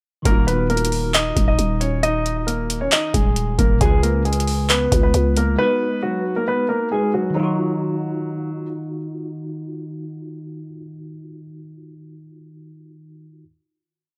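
A half-time trap beat at 135 BPM in Eb minor drives this brooding, eerie hip hop piece: a booming, tape-warm analog drum machine sits up front with a deep kick, metallic hats, handclaps and fast hi-hat rolls, while a growling, buzzy 808-style bass holds long sub-bass notes that follow the kick, a dark, mellow concert grand piano loops an octave-doubled melody like a sample, and a clean tine electric piano with ensemble chorus sustains spread chords through its built-in speakers, with the drums dropping out at 5.5 s, the grand piano at 8.7 s, and the electric piano lingering alone on the final Ebmadd9 until 13.4 s in a dry sound.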